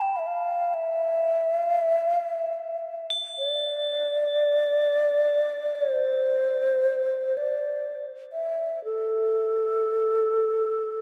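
A breathy, hollow low xiao carries the melody up front and close, its bamboo tone colored by vibrato, tongued notes and a tape echo, in this haunting, spacious meditation piece in free time and A minor. High crotales struck with plastic mallets add a shimmering, bell-like texture behind it. Both play throughout the 11-second fragment of a longer work, set in a huge, wet ambient reverb.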